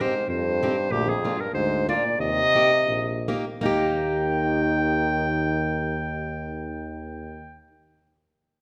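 Alpine folk dance-band music in a bouncy, festive 2/4 at 75-97 BPM with a light swing in Eb major, cut from a longer piece, where a bright, up-front clarinet carries the melody over a close-miked euphonium second line with vibrato, a fingerpicked plugged-in steel-string acoustic guitar accompaniment and a mellow, smooth-topped tuba bass entering at 0.3 s, the tempo slowing from 0.9 to 3.6 s before the second section begins, all set in a wet recital-hall reverb.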